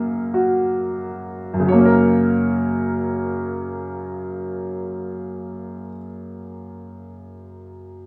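A clear grand piano opens on an F# chord and slows over the first 1.7 seconds, setting a tender, peaceful mood in this short classical fragment cut from a longer piece. Played solo in F# major at a slow 44-48 BPM in 4/4 with a free, rubato feel, the piano spans F#2 to F#5 with a smooth, vintage tone and long sustain, sitting up front before it ends at 8.1 seconds. A wet studio reverb places the room a little further back, lending the lyrical phrases a soft halo.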